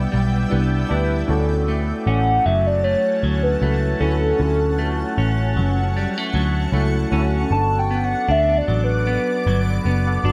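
Indie bedroom pop in D major at a relaxed 77 BPM with a gentle sixteenth-note swing, this sunny, laid-back clip from a longer piece drifts from Cmaj7 to Dmaj7 and settles on Gmaj7 at 7.5 seconds. A dark, round, foam-muted electric bass sits up front beneath twangy clean electric guitar with lush chorus and vibrato, nostalgic warbling lo-fi synth keys with cassette-tape character, and a shimmering, ethereal pad washed in built-in reverb and phaser. From 2.1 to 9.6 seconds, a soft, hollow, woody clarinet-like synth lead carries the melody, colored by phaser, lush chorus and slapback echo, all within a light room reverb.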